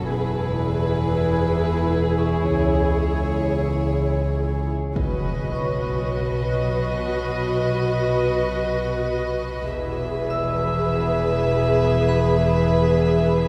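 Tense and ominous, this cinematic suspense cue sets a floating violin melody over dark, woody violins and violas, a rich cello section in the background and a distant double bass section, all bowed sul tasto, while an eerie, inharmonic metallic drone with chorus hums beneath, a ringing vibraphone with hard mallets enters at 2.2 seconds, and a huge, dark impact lands at 5.0 seconds, all bathed in a cavernous cathedral reverb.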